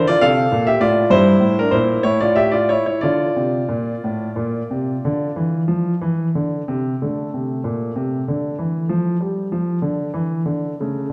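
Flowing and radiant, this brief excerpt from a longer baroque-style suite movement unfolds in D minor on a clear concert grand piano playing solo. The pulse sits around 59-67 BPM counted in dotted quarters, in a 12/8 metre shaped by free rubato, and the instrument is tuned slightly below standard pitch at A4 = 437 Hz. The piano sounds open and up front, with deep bass and long sustain, moving through a harmonic turn of Dm, Em7b5/G and A5 before settling back on Dm at 3.0 seconds. Its range stretches from G2 to F5, and a new section begins at 7.0 seconds, continuing until the cut at 11.1 seconds. A wet recital hall reverb, with a decay of about 1.6 seconds, surrounds the playing, and the production leans dark and warm.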